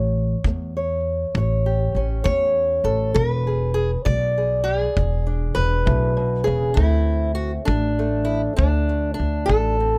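A fingerpicked old ladder-braced acoustic guitar leads this laid-back, rollicking country blues excerpt, its dark, boxy tone and aged strings sitting up front over a steady 12/8 pulse. Beneath it, a pizzicato upright bass with gut strings adds a thumpy, woody bottom, while a tight kick drum played with brushes enters at 0.4 seconds and stops at 9.6 seconds. Close, detailed microphones and little reverb keep the sound intimate as the chords pass from A7 to E7 to D5.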